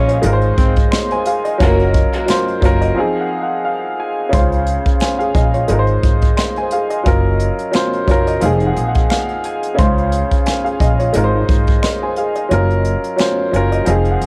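A breathy tenor saxophone phrase with tape echo opens this gritty, dark boom-bap hip-hop excerpt for just its first 0.7 seconds, over a worn, slightly detuned upright piano and a thumpy pizzicato upright bass at 88 BPM with a swung feel, while an up-front brushed jazz kit with a boomy kick, soft background finger snaps and a very quiet, lush bowed string stab at 1.6 seconds round out the lightly reverberant home cassette recording, whose kick drops out from 12.5 seconds.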